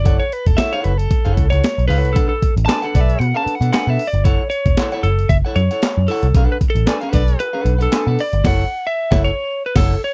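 Cool and funky, this dry, close 1970s-style funk excerpt features a slightly broken-up lead guitar soloing over a clean picked rhythm guitar, a dark, round foam-muted picked bass and a gritty breakbeat kit with a thumpy kick and high-tuned snare, while a punchy horn section with light vibrato adds brief lines at 2.7 and 6.9 seconds, hollow group handclaps join from 2.7 seconds, and the band hits an accent at 8.4 seconds.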